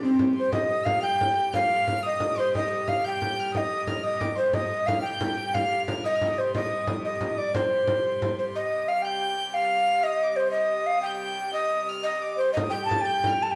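A lilting 6/8 pulse with a straight feel drives this mysterious medieval dance, cut from a longer piece. The tenor recorder carries the melody up front, its hollow, woody tone marked by a crisp, chiffy attack and vibrato. Alongside it, a single violin plays a second line in a close, intimate sul tasto voice with an airy bow and soft attack, while a bowed hurdy-gurdy holds a smooth, even drone from a distance. A frame drum struck with hard hands propels the first half, falls away at 8.5 seconds, then returns at 12.6 seconds for the final bars. The whole band sounds as if playing live together in one room, bathed in a generous studio reverb.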